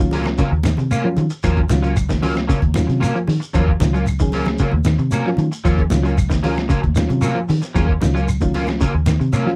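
A gritty, pitched-down sampler-style drum kit with a thumpy kick and medium-tuned snare sets a straight 4/4 pulse for this defiant, funky afrobeat excerpt, joined by damped, high-tuned congas, mellow shekere and woody claves, while a round, foam-muted fingered bass sits under an Ebm9 chord with a reedy electric piano, a clean semi-hollow guitar picking arpeggios in the background and a twangy, slightly broken-up guitar adding stabs through ensemble chorus, in a dry, close 1970s-style studio sound.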